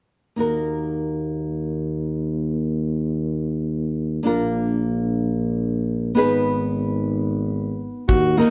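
A woody, dark fingerpicked nylon-string guitar and a mellow tuba with light vibrato open at 0.4 s in free time, tracing a bittersweet, restless Balkan wedding-band passage in Eb harmonic minor that moves from Ebm to Bb and then Abm. At 8.1 s an alto saxophone with vibrato and a smooth top steps forward for a brief melodic phrase, joined by a distant, roomy drum kit with a punchy kick and fat snare. A moderate stone-room reverb gives the live, in-one-room band an open, resonant air in this fragment cut from a longer piece.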